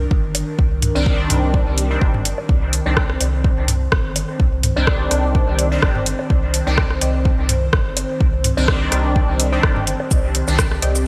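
Bright, 1980s-style digital production with light reverb frames this meditative, deep dub techno excerpt, set in C minor at 126 BPM in 4/4 with a gentle 16th-note swing. An airy, breathy pad holds a sustained Cmadd9 chord under chorus and sidechain pumping, while a round, soft sub bass sits beneath it, pumping in the same way. Up front, a tape-warm electronic kick starts at 0.1 seconds, joined by a deep house kit of metallic hats, rim click and shaker, both layered and touched with studio reverb. In the background, analog-toned electronic woodblock and toms pump and trail off into dub echo. From 1.0 seconds, a juicy, detuned sawtooth polysynth plays stabs with a resonant filter sweep, chorus, phaser and echo, and from 3.2 seconds a very quiet, muted chord stab adds a filtered, plucked riff high above.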